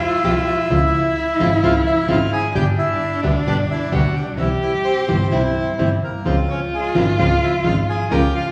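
This dramatic, passionate tango excerpt moves at 130 BPM in 4/4 with a rubato feel, its reedy, airy bandoneon carrying the melody up front while a warm cello, played with vibrato, soft attacks and expressive portamento, sings a second line beside it. A fingerpicked classical nylon-string guitar supplies the accompaniment, finger squeaks audible, and a clear, focused double bass anchors the low end; both the bass and the cello are bowed. The harmony moves from Fmadd9 through Dbmaj7, G and C back to Dbmaj7, all set in the lush reverb of a recital hall.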